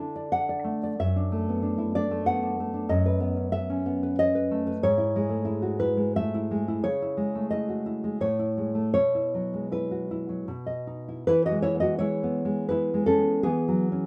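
This romantic solo classical guitar piece is tender and sunny, unfolding in 3/4 with a rubato feel that drifts between 75 and 96 BPM in E major, tuned to A4 = 439 Hz. A single nylon-string guitar carries everything from 0.0 to 14.1 seconds, ranging from F#2 up to F#5. Its tone is dark and full-bodied, with a deep classical character; the strings are thumb-plucked and sit up front, framed by light reverb. The harmony moves from D through B7/F# and E/G# to C#m and Amaj7, then settles on a Bsus4 that resolves to B. At 11.3 seconds a new section opens on E, and the passage is cut from a longer piece.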